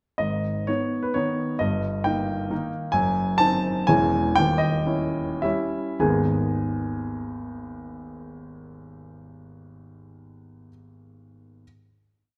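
A baby grand piano carries this brief romantic dance in triple time alone, its tone warm, polished and placed up front. A single-line melody in dotted rhythms sits over bass notes and chords that lean on the second or third beat of each bar, giving the dance a gently lilting, wistful character. The playing moves with free rubato, and from 2.3 seconds the pace gradually slows, drawing the short phrase toward a nostalgic close. At 6.0 seconds a final chord arrives and is held, hanging in the reverberant recital hall until about 9.5 seconds. The sound is intimate yet spacious, with the hall's wet reverb adding a soft glow around the present piano.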